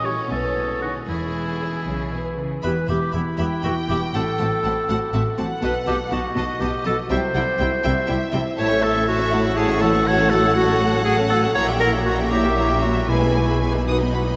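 Drenched in a vast cathedral-like reverb with a softened top end, this playful, whimsical film cue in a lilting 6/8 unfolds with a magical, storybook air. A lush string ensemble carries it: a vibrato-rich violin section sings the expressive melody over a second, focused violin line, while the viola section supplies smooth, even accompaniment and the cellos and rich double basses anchor the bass beneath the ringing, fingerpicked concert harp arpeggios. A vintage-tinged oboe offers a brief second line until 2.4 seconds, and a clear, up-front clarinet takes over from 2.6 seconds in classical style as the harmony drifts through shadowy diminished turns.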